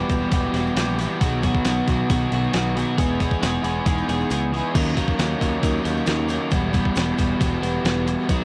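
Indie rock excerpt, jangly and wistful, where a crunchy overdriven guitar and a bright, twangy twelve-string electric guitar with subtle chorus and digital delay play riffs over punchy picked bass, a clean 12-bit drum machine with a thumpy kick and fat snare that drop out between 4.3 and 4.8 seconds, and a grainy, distant tube shaker, all dry and colored by the warbly pitch drift of worn cassette tape.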